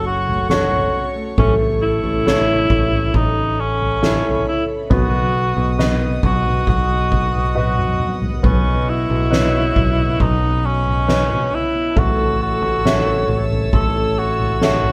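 A hopeful, heartfelt pop ballad opens with a close-miked cor anglais singing the melody up front with light vibrato over clear, polished baby grand piano, a very quiet fingerpicked steel-string acoustic guitar, growly fingered electric bass and soft, floating sul tasto strings, while a soft-mallet drum kit with a boomy kick and fat snare enters at 0.3 s and plays a fill at 7.6 s as the chords move from F#m through A and B to Badd9, all in the moderate reverb of a band playing together in one room.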